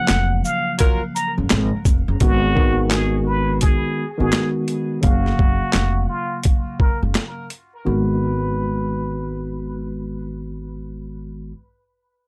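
This dark, tough boom-bap hip-hop excerpt opens with a bright, plunger-muted trumpet melody over a mellow, slightly out-of-tune tine electric piano carrying a worn cassette-tape character, at 85 BPM in 4/4 with a swung sixteenth-note feel in G# dorian. An up-front upright bass, woody and pizzicato on steel strings, joins almost at once alongside a compressed, pitched-down sampler-style drum kit with a thumpy kick, high-tuned snare, hi-hat, handclaps and shaker. A tight horn section with vibrato punches in with a brief stab at 0.8 seconds, and both the horns and the trumpet are treated with analog delay, the trumpet's wah-wah tone delivering forceful, vintage jazz-style phrasing. The harmony moves between F#maj7 and G#m7, with a filter sweep running from 2.2 to 7.9 seconds. The drums drop out at 7.7 seconds, just before the sweep ends, and the trumpet falls away at 9.9 seconds, leaving the bass and electric piano. 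The sound is dry and gritty, with the hardware grain of transformer saturation.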